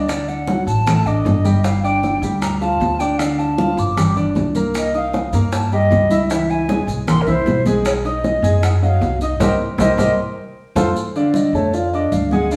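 A live band sound fills a large, wet room in this lively, sophisticated Afro-Cuban jazz excerpt at 155 BPM in a straight 4/4, with a close-miked, airy concert flute carrying the melody with vibrato and a crisp attack over an up-front grand piano, a woody, thumpy pizzicato upright bass, and background congas and bongos with grainy, compressed maracas. The harmony wanders through chords such as Gsus2, Cm7, Dbm, C7 and B6. Near the end of a band accent and drum fill, the round, soft-handed bongos drop out at 10.9 seconds, and the flute takes a short solo over a Dm chord from 11.0 seconds.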